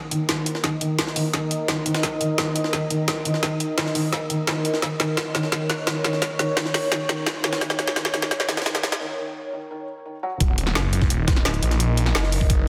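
A phased, detuned saw bass, thick, swirling and saturated, surges up front at the drop at 10.4 seconds, backed by a very quiet electronic impact, in this tense, futuristic slice of dark technical drum and bass at 172 BPM in Eb minor. Before it, a build-up sets a felt-muted upright piano's soft, intimate arpeggios with delay over a deep, moody ambient pad with chorus, both pumping to the sidechain, while an overdriven drum and bass kit with a woody snare and bright hats sits forward and a gritty, pitched-up jungle sampler kit echoes from a large room in the background. A knocking, overdriven electronic kick drives the drum fill until a break at 9.0 seconds, all inside a lush hall reverb and a dense, heavily limited master.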